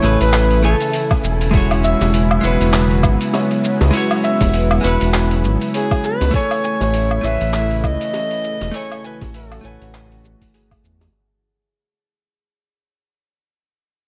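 A swung 4/4 groove at 100 BPM sets an easy pace for this smooth sunset chillout excerpt, where a round, deep analog bass sits up front beneath a gritty, compressed sampler-style kit of cabasa, handclaps, hi-hat and woodblock, joined at 1.1 s by a soft electronic kick and later by tight, high-tuned bongos in the background. A clean, scooped electric guitar with digital delay and a lush, detuned unison pad with chorus and phaser hold the Amaj7 and E69 harmony, while a fingerpicked, ringing Celtic harp adds delayed arpeggios from 1.5 s. A mellow soprano saxophone carries the melody through 12-bit sampler grit and delay, returning at 5.8 s as the excerpt fades out inside a plate reverb and a worn, warbling cassette-tape haze.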